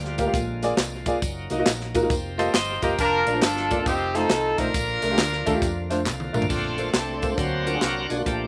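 A swung 4/4 groove at 136 BPM drives this short, uptempo gospel passage in Bb major, its mood reverent and uplifting. Crisp fusion drums with a punchy kick and a medium-tuned snare sit alongside a round, dark hollow-body electric bass, while tambourine and group handclaps sit in the background from 0.2 seconds. A woody, vintage upright piano with slapback echo carries the accompaniment, and a shouting, lightly overdriven tonewheel organ holds sustained chords through a slow rotary speaker, its key click audible. A twangy, clean electric guitar adds a brief second line, and at 3.0 seconds a horn section with light vibrato takes the melody up front, touched by slapback echo. After a drum fill, the organ steps out for a solo from 6.5 seconds as a lush bowed string section enters in the background, the whole recording dry with little reverb.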